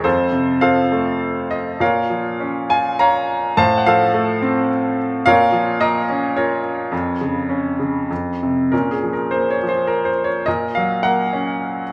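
In a rubato 3/4 that drifts between 96 and 111 BPM, this brief cut from a longer classical piece is a lyrical solo piano passage in Bb minor, tuned to A4 = 443 Hz, with a bittersweet, brooding mood. A bright baby grand sits up front throughout, its brilliant, long-sustaining tone ranging from F2 to Bb5 as the harmony moves from F through Bb minor and F/A before the opening material returns at 8.7 seconds and settles on Gb/Bb. A moderate recital-hall reverb gives the instrument a natural sense of space.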